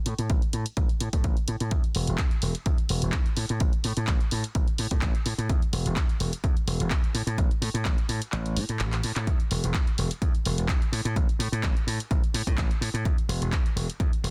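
A steady 4/4 pulse at 127 BPM drives this funky, nostalgic slice of filtered disco house, with a light 16th-note swing giving the groove a loose bounce. An electronic kick drum sits up front, analog and dry with a solid punch, while an analog drum machine supplies handclaps and hi-hats, its hats pumping against the sidechain and both drum parts touched by studio reverb. A bright, amped slap bass carries the low end between E1 and A2, kept forward in the mix, pumping with the sidechain and shaped by a low-pass filter that sweeps across the whole passage. The kick briefly drops out at 8.3 seconds, leaving room for a short drum fill from 8.9 seconds before the full beat returns at 9.3 seconds. The overall sound is close and dense, with a heavily limited modern master that keeps the groove tight and loud.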